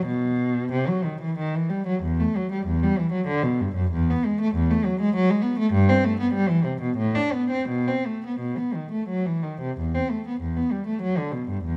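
A lone bowed cello sings up front from the first moment, warm and expressive, with vibrato and gliding portamento in this grave, solemn baroque-style suite movement in three. The single player shapes the line with a free rubato, and the opening material returns at 9.8 s before the excerpt breaks off at 11.8 s. Close, detailed microphones capture the instrument, framed by a moderate recital hall reverb.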